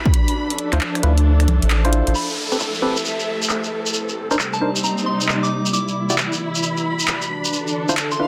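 An ethereal pad with a slow attack and a dark, lush string section open this bouncy, late-night two-step garage excerpt at 134 BPM in A minor, both breathing with sidechain pumping under a swung house kit of congas, finger snaps, handclaps and filtered hi-hats. A hollow, chorused organ stab with digital delay and a round dub sub bass enter at 0.7 seconds, the bass dropping out at 2.1 seconds as a grainy shekere comes in. From 2.2 seconds a filter sweep moves over the drums and stab as a downlifter and a soft, warbling FM bell melody with tape echo join over minor ninth chords, all inside a dense, heavily limited mix.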